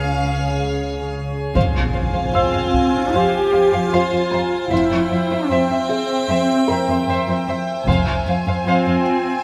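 Mysterious and ominous, this brief passage from a longer cinematic suspense score moves at 76 BPM in a straight 4/4, centred on F harmonic minor. Veiled, con sordino strings carry it: a muted violin section sings the melody with vibrato, a second violin line joins at 1.5 seconds, and a soft-attacked viola section fills in the accompaniment from 2.3 seconds, sitting forward in the blend. Beneath them, lush, bowed cello and double bass sections anchor the bass, while a bright, evolving wavetable pad with a slow attack, phaser and its own built-in reverb holds sustained chords moving from Db to F minor, C over F and back to F minor. A felt-muted upright piano adds a mellow, intimate texture in the background, its action noise audible. At 1.6 seconds a hard-stick taiko ensemble and an electronic impact strike together, and the taiko returns near the close. The whole sits in a moderate scoring-stage reverb that lends a sense of space.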